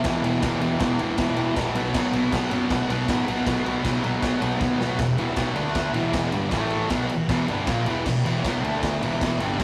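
A rowdy, swaggering garage rock excerpt, cut from a longer piece, drives ahead at 157 BPM in a straight 4/4 as a small band plays through a roughly 9.6-second stretch. A thick, double-tracked fuzz guitar sits up front with a riff built on power chords, moving from E5 to B5 before the second half shifts restlessly among E5, D5 and A5. Beneath it, a growling picked electric bass, overdriven and very quiet in the mix, stays low. The raw acoustic drum kit features a punchy kick, a medium-tuned snare, crash and ride, its sound gritty and saturated with a pumping stone-room character and a rolled-off top. A drum fill at 4.6 seconds pushes into the second section at 5.0 seconds. The whole take has the rough feel of a rehearsal room, with tube saturation and a moderate small-room reverb.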